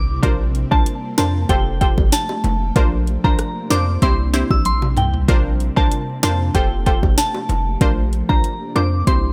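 Sunny and summery, this short dancehall cut at 95 BPM rides a straight 4/4 groove over chords moving from Bbadd9 to Fadd9 and C, with an up-front electronic afro-pop drum kit of deep kick, sharp snare, metallic hats, rim clicks and toms, a drum fill at 4.7 seconds, and low-tuned, saturated bongos sitting in the background. A boomy 808-style bass with a sine body and noise layer anchors the low end, while a round, detuned sawtooth analog pluck with a filter sweep and sidechain pumping fills the middle from 0.2 seconds. Above, a pure FM bell carries the melody with chorus, tremolo and digital delay, floating over an ethereal, airy pad whose slow-attack chords shimmer through phaser, reverb and sidechain pumping.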